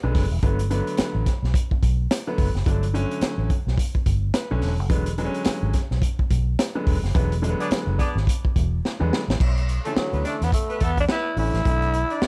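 Swung sixteenths at 107 BPM drive this sly funk excerpt in B dorian: a crunchy breakbeat kit with a punchy kick and high-tuned snare sits up front beside a round, foam-muted vintage electric bass, a woody upright piano jabs out stabs and a fill at 4.1 seconds, a distant, roomy horn section doubled in octaves joins at 7.6 seconds during a band accent, and a growling, breathy tenor saxophone takes the melody from 10.0 seconds over a Bm11 in small-room ambience.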